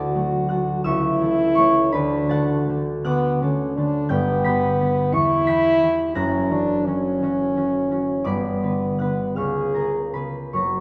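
A wet concert hall reverb, with a decay of about 1.9 seconds, gives this short classical excerpt a spacious, resonant sound. It is a romantic duo for French horn and concert harp in D major and 6/8, moving in a slow, rubato pulse of roughly 49 to 59 dotted-quarter beats per minute, with a yearning, solemn mood. The warm solo horn carries the melody in a narrow range from B3 to G#4, and its tone is distant and roomy yet still sits up front in the mix. The acoustic harp accompanies across a broad span from F#1 to C#7 with a ringing, thumb-plucked sound. Both instruments play together from the start to the end at 10.8 seconds, over harmony that moves from D through G, Em and F#7 and closes on C#7.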